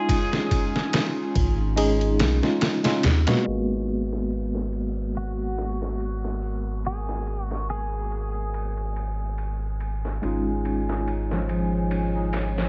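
Trip hop at a slow 71 BPM in G# dorian, this dark, melancholic passage, cut from a longer piece, rides a lightly swung 16th-note groove. A compressed, pitched-down sampler-style drum kit sits up front with a thumpy kick, medium-tuned snare and hi-hat and ride cymbal, joined at 1.4 seconds by a round, deep analog bass. A clean tine electric piano with harmonic tremolo, heard through its built-in speakers, carries the accompaniment. Beneath it, a warbling, nostalgic tape-like pad with chorus holds sustained chords in the background. A bright, twangy twelve-string electric guitar with subtle chorus and tape echo plays a narrow melody until 9.8 seconds. Filter sweeps move across the electric piano and then the pad, a faint electronic downlifter passes in the background, and a ringing, fingerpicked concert harp enters at 10.2 seconds with arpeggios as the harmony returns from G#m9 to C#add9/G#. 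Vinyl crackle, light reverb and a low-pass filter color the recording.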